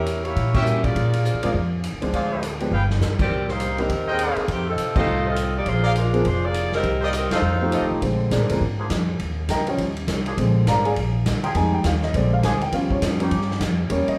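An up-front saxophone section with light vibrato carries the melody over clear trumpet stabs, a woody pizzicato upright bass, a punchy big-room drum kit and a deep-toned concert grand piano in this joyful, brassy big band swing at 204 BPM in Bb mixolydian, until the saxophones and trumpets stop and the piano takes a solo from 8.0 seconds, joined at 8.8 seconds by nasal, straight-muted trombone chords, with the band playing live in one room under moderate studio reverb.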